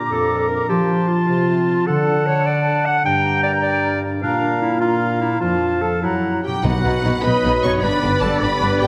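Bathed in wet scoring-stage reverb, this heroic, soaring cinematic excerpt in 6/8 at 102 BPM opens with ringing thumb-plucked harp arpeggios, an airy flute section, a punchy oboe and a close-miked clarinet carrying second lines over tight trombone chords through Bb, F, D and Gm, then turns through F#7 to B at 6.6 s as a lush studio violin section takes the soaring vibrato melody, joined by a background symphonic violin line, clear trumpet stabs, soft-mallet timpani, dark French horn chords, a distant cello and double bass foundation, and a smooth, even viola accompaniment from 7.2 s.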